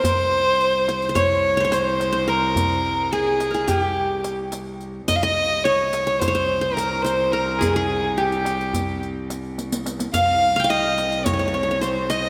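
Turkish makam ensemble music in C makam kurdi, this hypnotic, soulful excerpt moves at 214 BPM counted in eighths across a straight 9/8 metre. A dark violin carries the melody up front, intimate and close, with light vibrato, a soft attack and an airy bowed tone. Beneath it, a plectrum-plucked qanun plays a second line with a bright-edged, triple-strung sound, while a rich, focused cello holds a low C drone from a distance with its own vibrato. A deep clay-shell darbuka, close and dry under hard hands, and a riq with bright jingles drive the percussion, and the drums break into a fill from 9.6 to 10.1 seconds. The whole ensemble sits in a lush, wet hall reverb with a rough home-demo mix, and the piece is cut from a longer work after 12.3 seconds.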